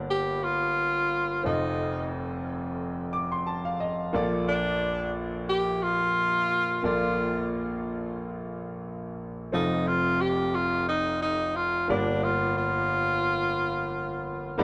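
A clear tenor saxophone carries the melody with a light vibrato and a tape echo, its roomy tone sitting up front in this uplifting, nostalgic pop piece at 89 BPM with a gentle 16th-note swing in F mixolydian. A concert grand piano with deep bass and an open sound accompanies through Gm7, F7 and Bbmaj7 changes, adding a fill between 2.8 and 4.1 seconds before a new section begins at 9.5 seconds. A moderate plate reverb and dark, warm production shape this short passage cut from a longer piece.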